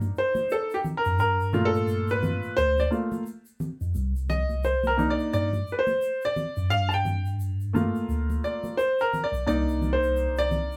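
Mellow and smoky, this jazz-hop excerpt moves at 87 BPM in G minor with a 16th-note swing, trading Cm9 and Gm9 chords across its roughly 10.8 seconds. A clear, worn concert grand piano sits up front and carries a solo throughout, its deep bass and short sustain sounding natural, while a mellow, warm, clean tine electric piano heard through built-in speakers holds down the low bass line. Bright, acoustic congas and an egg shaker played with soft hands add small-room percussion, and the whole band shares a moderate studio ambience as if playing live together.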